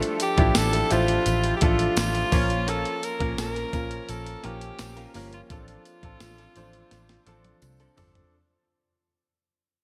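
A romantic, nostalgic slice of 1980s-style pop, this short fragment moves at an unhurried pace and fades out across its whole length, lifted from a longer piece. A breathy alto saxophone carries the melody up front with bright vibrato, entering at 0.2 seconds over a clear, polished grand piano accompaniment. A clean electric guitar, recorded direct and compressed, plays a picked riff in the background, bathed in lush chorus and delay. The 12-bit drum machine has a sampler-style, tape-tinged character, with a thumpy kick and medium-tuned snare soaked in gated reverb, while a jingly tambourine sits close and dry at the back and a dark, foam-muted electric bass adds round, punchy low notes from 0.4 seconds. The harmony drifts from Dmadd9/A through Bbm to F6/A, a drum fill arrives at 6.9 seconds, and the whole mix shimmers with bright digital production and a lush hall reverb.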